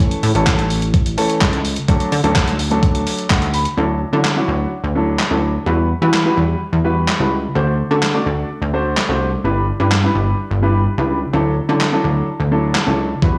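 A straight 4/4 pulse at 127 BPM drives this carefree, summery dance-pop fragment in D major, cut from a longer piece. A 12-bit digital drum machine with a sampler-style character lays down a thumpy kick, medium-tuned snare, handclaps and hi-hat, all overdriven and re-recorded in a small room so they sit up front. Beneath it, a plucky analog bass blends sawtooth and square-wave tones with a fast-attack filter pluck and a funky, punchy character, pumping under sidechain compression alongside a dark, mellow baby grand piano that carries the chords. The harmony moves from A to D, then through Dadd9, Emadd9, D7 and G6 before returning to Dadd9. The piano takes a short fill from 3.1 to 3.8 seconds leading into the second section, and a brief break arrives at 10.9 seconds. The whole recording has a blown-out, overdriven sheen, with light reverb and studio ambience.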